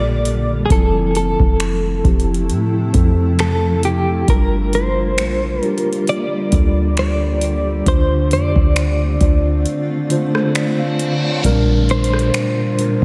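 A lightly swung 4/4 groove from a booming analog drum machine, with deep kick, metallic hats, finger snaps and rim clicks entering at 0.3 seconds, carries this sensual, moody contemporary R&B excerpt, where a deep sine 808-style bass and an up-front mellow tine electric piano sit beneath a dark, picked clean electric guitar melody colored by tremolo and delay, a blurred, evolving granular cloud pad pumps inside its own reverb, and a reverse cymbal and downlifter appear at 10.5 seconds during a break that begins at 9.7 seconds, all within a dreamy, hall-soaked mix.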